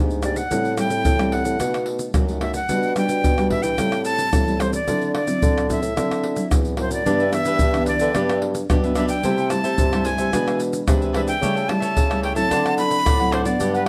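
A moderate, large studio reverb surrounds this playful, festive samba and choro excerpt in 4/4 with a straight feel. Close and dry, the percussion of tube shaker, pandeiro, tamborim and tight surdo sits up front, played with soft hands. A breathy, bright jazz flute carries the melody from 0.2 seconds, its metal tone tongued and reedy with vibrato, also placed up front. Beneath it, a thumb-plucked nylon-string guitar supplies warm classical accompaniment while a dark bassoon with a smooth top holds the bass line in a classical style. At 7.1 seconds a crisp, picked cavaquinho joins quietly as the harmony moves from Em7, Am7 and B7 toward G6, C6 and a closing D9.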